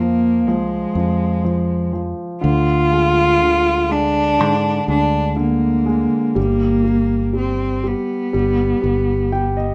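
A bowed cello carries the melody from the first moment, its nasal, slightly boxy tone with light vibrato sitting up front over a clear concert grand piano and a round, punchy fingered electric bass in this slow, reflective folk fragment at 61 BPM in a straight 4/4. The piano's polished accompaniment, with audible action noise and long sustain, and the dark, direct bass stay beneath the cello as the harmony moves from Fm to Ddim at 2.4 seconds and on to G at 6.4 seconds. Light reverb gives the short, intimate passage a gentle sense of space before it breaks off at 9.7 seconds.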